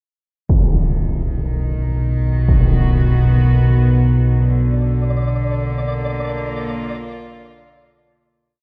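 An ominous, desolate dark ambient piece in free time opens at 0.5 s with a huge, distant, low-passed impact and a reedy, gut-string chamber cello section fading in on slowly shifting bowed chords from B to A#/B, soon joined by a deep, rumbling, up-front drone with a slow attack and long release, all sunk in a cavernous cathedral reverb, while from 4.7 s a faint, flickering, grainy texture holds a mellow high note before the piece fades out by 8.4 s.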